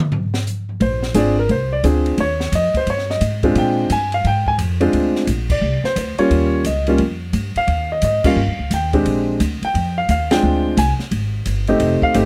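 A swung 4/4 groove opens on an acoustic drum kit with dark cymbals, a high-tuned snare and a boomy kick, joined at 0.8 seconds by a smooth, vintage grand piano carrying the melody and a woody pizzicato upright bass, both up front in a dry, close and detailed sound, as this playful, relaxed jazz piano trio moves between Bb9 and Eb9 chords with three band accents in a fragment cut from a longer piece.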